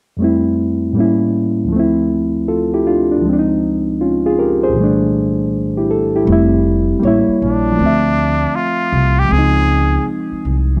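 A cassette-tape haze and moderate spring reverb wrap this cosy, mellow hip hop excerpt at 79 BPM, swung on the sixteenths in F major, where a reedy, up-front electric piano carries the Fmaj9 to A7b9, Dm7 and Dbmaj9 changes from 0.2 seconds. A woody pizzicato upright bass joins at 6.3 seconds, and at 7.4 seconds a close-miked trumpet with straight mute adds a nasal, breathy, whispered jazz solo with vibrato and a soft attack.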